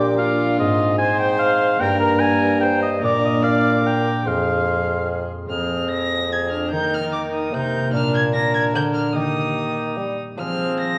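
Set in a straight 3/4 at 147 BPM, this short cut from a longer piece is a courtly, solemn dance in renaissance consort style, moving in F dorian. A single bowed violin carries the melody high in its range, its gut-string sound dark, nasal and distant, while a mellow cor anglais with vibrato sings a smooth second line beneath it. A concert harp, fingerpicked and ringing up front, fills out the accompaniment alongside one bowed viola of reedy period tone, and a solo bassoon with light vibrato and a soft attack holds the bass. Every part plays from start to finish, with the music turning to a new passage at 5.5 s. A recital hall reverb lends a wet bloom, and the overall production is warm.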